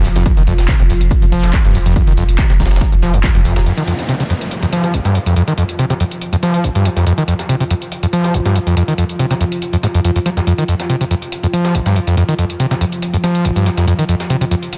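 A straight 4/4 pulse drives this dark, industrial peak-time techno fragment, cut from a longer piece. An overdriven, layered electronic kick hits heavy from 0.3 to 3.3 seconds, alongside a thick, saturated sine sub bass that sits in the background from the start and drops out at 3.7 seconds. After that, a downlifter sweeps by quietly in the background. Up front throughout, a screaming acid riff squelches and snarls, its resonant sawtooth tone pushed through distortion, chorus, digital delay and sidechain pumping, with filter sweeps and fast, decaying notes. Beneath it, a deep, moody pad drones on detuned unison sawtooths with a sub octave, warbling with chorus and built-in reverb and breathing with the sidechain. The percussion is split between a punchy, tape-warm analog drum machine playing handclaps and pumping hi-hats with a small-room character, and a very quiet, gritty, pitched-up breakbeat kit adding hi-hat and a medium-tuned snare, all sealed in a dense, heavily limited modern master with light reverb.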